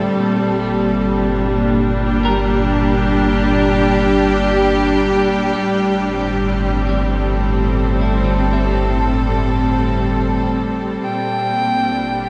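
Awash in a long, wet shimmer reverb, this spacious and reflective ambient fragment in 3/4 sets a biting, up-front symphonic string section's sustained chords over a round, deep analog bass, while a very quiet, twangy, slightly broken-up electric guitar picks arpeggios through the drift from Gm to C69/G, and an earthy, amplified electric violin enters at 11.0 seconds with a single sliding, lightly vibrato-touched note.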